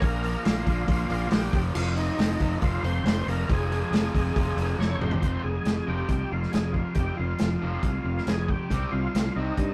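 A straight 4/4 groove at 138 BPM drives this swaggering, brooding classic rock excerpt in F minor, with a vintage kit up front, its punchy kick and dark cymbals in a small room, and a fingered electric bass sitting forward with a warm, direct and amped tone, moving from Bbm to Fmadd9 and reaching Cm at 8.7 seconds. Two guitars play riffs in the low register, a bright, compressed distorted one set in the background and a raw garage guitar with overdrive and spring reverb. Above them a thick, gritty tonewheel organ carries the melody through a slow rotary speaker and chorus vibrato, a soft ensemble organ-string pad sustains chords barely audibly, and a drum fill at 4.8 seconds leads into the second section of this rough, tube-saturated rehearsal-room recording.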